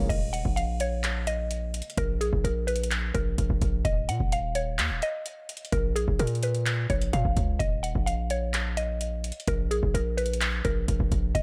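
Brooding and dark, this half-time trap hip hop piece in Eb minor at 128 BPM sets a hard-hitting, sine-heavy 808-style bass and a booming analog drum machine with a deep kick, metallic hats, handclaps and crash cymbal up front, while a woody, mellow mallet-like synth pluck, softened by chorus and a low-pass filter, trails dub echo through an echo-heavy digital ambience in a short cut from a longer track.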